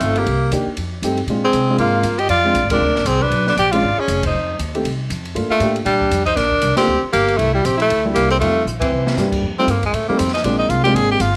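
A brisk swing at 236 BPM in 4/4 drives this relaxed, warm small-group bop passage, with a woody, thumpy pizzicato upright bass, an open drum kit of dark cymbals and a boomy kick sitting low in the mix, and a natural baby grand piano comping with short sustain. Up front, a breathy, bright tenor saxophone with vibrato carries the melody while a clear alto saxophone adds a second line, and the band hits shared accents along the way. After a drum fill ending at 9.2 seconds, the alto drops out at 9.3 seconds and the tenor solos from 9.4 seconds, all set in moderate spring reverb and small room ambience.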